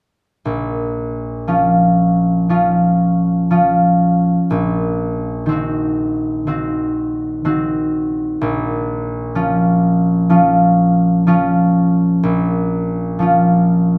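Solemn and yearning, this classical passage in Bb minor moves at about 61 BPM in 4/4, its beats uneven and pulled by rubato, and it is cut from a longer piece. A concert harp, fingerpicked, ringing and up front with an acoustic warmth, plays the accompaniment from 0.5 to 14.0 seconds, spanning Bb1 to Gb4. It moves from Bbm to Cm7b5/Bb at 4.5 seconds and back to Bbm at 8.4 seconds, in light reverb and tuned to A4 = 441 Hz.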